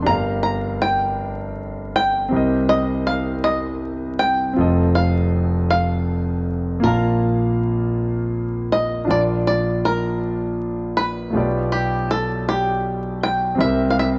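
Hopeful and uplifting, this slow gospel excerpt moves at 53 BPM in a straight 6/8 in Bb major, with a twangy, fingerpicked bluegrass banjo carrying the melody up front over a clear concert grand piano whose deep bass and long sustain fill out the accompaniment. The chords pass from Gm7 through Cm7 and F7 to Bb5, then restart the phrase at 9.1 seconds on Bbmaj7 before moving to G7/B and C7. A moderate echo chamber reverb and a dark, warm production flecked with vinyl crackle give the short clip its character.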